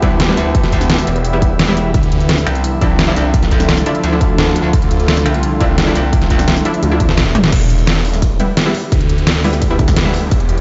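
An excerpt of dark technical drum and bass opens straight into the drop at 172 BPM in E phrygian, with a punchy, tape-tinged electronic kick and an up-front dubstep kit of deep snare, crisp hats, ride, crash and toms driving a mechanical, aggressive groove. Beneath them, a metallic, FM-edged wobble bass with chorus growls low and saturated, while a thick, swirling phased saw bass with overdrive cuts in at 1.1 seconds and returns from 4.7 seconds onward. Bold, bright orchestra-hit-like synth stabs with reverb and delay punctuate the harmony as it moves from E minor to D minor add nine. Further back, a swarming, tense drone evolves slowly and an ethereal, warbling vintage pad shimmers with ensemble chorus, both breathing with sidechain pumping. A drum fill and a band accent lead into a fresh pass of the section at 7.5 seconds, back on E minor, after which the pad and wobble bass drop out, all set in a large, digital-sounding room with a dark top end.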